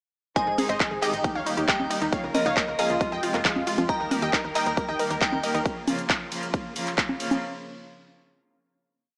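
A punchy four-on-the-floor electronic kick and a big-room dance kit of metallic hats, handclaps, congas, ride and shaker drive this bittersweet, euphoric uplifting trance drop at 136 BPM in Bb dorian, where a bright, detuned unison pluck plays a repeating sixteenth-note riff in thirds and sixths over a pedal note with sidechain pumping and dub echo, a crystalline FM bell adds a second riff through chorus and digital delay, a gritty 12-bit pluck arpeggio with tape echo sits in the background, a round FM bass gallops in sixteenths, and a floating, pure studio string pad holds sustained chords until 7.4 s, all in light reverb with a small-speaker sound.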